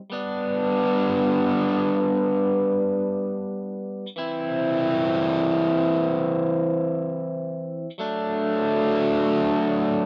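Rough, lightly reverberant home-demo sound frames a short rock excerpt in free time, where a bright, biting, overdriven electric guitar, picked and double-tracked up front, takes the solo across the full 10.1 seconds over G, C/E and D, giving an upbeat yet wistful mood.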